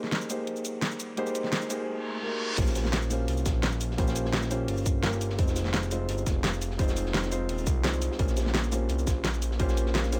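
Liquid drum and bass at 171 BPM in Bb dorian, soulful and lush, cut from a longer piece. A felt-muted upright piano sits up front throughout, soft and intimate with audible action noise, roughened by vintage 12-bit sampler grit and a delay as it moves through Abmaj9, Bbm69 and Fm7 chords, while a pop drum kit with a fat snare, cabasa, crash and hi-hats plays from the start. A riser builds tension from 1.2 seconds, joined by a reverse cymbal at 1.9 seconds, until the drop lands at 2.6 seconds. There a punchy, layered electronic kick and a smooth sawtooth-and-square synth bass enter, the bass saturated and sustained with a moving notch, up front in the mix. Behind them a crunchy breakbeat kit adds a dark, gritty layer of hats and snare with a rolled-off top, all under light reverb and studio ambience.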